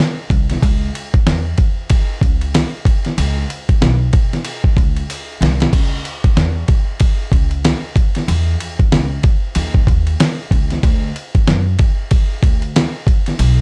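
Nocturnal and mellow, this short jazz-hop cut from a longer hip hop piece rides a swung sixteenth-note groove from a dusty soul sampler-style drum kit, sitting up front with a thumpy kick, fat snare, hi-hat, ride and crash, all overdriven and roughened by vintage 12-bit sampler grit. Beneath it, a woody, dark pizzicato upright bass with steel strings holds the low end, both parts entering at 0.3 seconds and playing through to 13.6 seconds. A drum fill at 5.1 seconds leads into a repeat of the opening section, and the whole mix carries light reverb and a dark, warm production.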